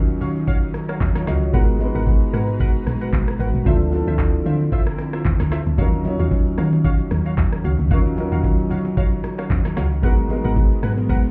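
Heard muffled as if through a club wall, this hypnotic, deep amapiano excerpt in Eb minor moves at 113 BPM with a swung sixteenth feel over Ebm9, Abm9 and Dm9 harmonies: a knocking, woody R&B drum kit and a round, percussive log drum bass sit up front, while a dark, boxy grand piano with audible action noise plays mellow accompaniment, an airy, warbling pad with chorus and sidechain pumping holds chords in the background, punchy detuned sawtooth chord stabs with chorus and delay flicker through, and very quiet congas and bongos join at 5.8 s as Ebm9 returns.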